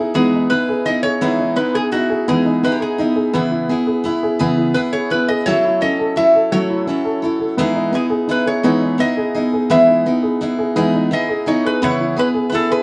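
Acoustic folk in a slow, lilting 6/8, pastoral and nostalgic, with a metallic, nasal resonator slide guitar played with fingerpicks and a steel bar carrying the melody up front over a full-bodied picked jumbo steel-string guitar with audible finger squeak and a woody, slightly detuned upright piano rolling out short-sustained arpeggios through Emaj7, C#m7 and A6 chords, all set in a dark production with moderate studio reverb in this brief cut from a longer piece.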